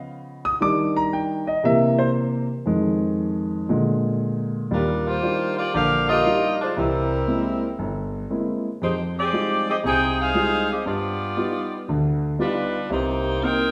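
Joyful and brassy, this swung jazz passage in Eb major at 117 BPM, cut from a longer piece, opens with a natural, up-front grand piano playing alone through chords such as Db7, Ebmaj7 and Fm7 until 4.7 seconds, when a warm saxophone section with light vibrato and a roomy, distant ensemble sound takes the melody over richer harmonies like Ebmaj9, C7b13 and G7b13, all set in a recital hall reverb.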